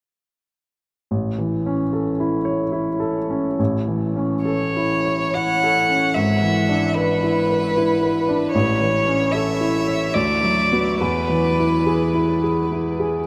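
Romantic classical music for violin and baby grand piano, serene and tender in a rubato 3/4 at about 65-77 BPM in A major, opens with the clear, intimate piano alone at 1.1 seconds, its action noise audible and its long sustain blooming, before the rich, smooth violin enters at 4.4 seconds with an even vibrato line that sounds distant yet up front, all bathed in a huge, wet reverb that suggests a vast, echoing space, as this short cut moves from A through E7/G# and Bm/D to rest on E.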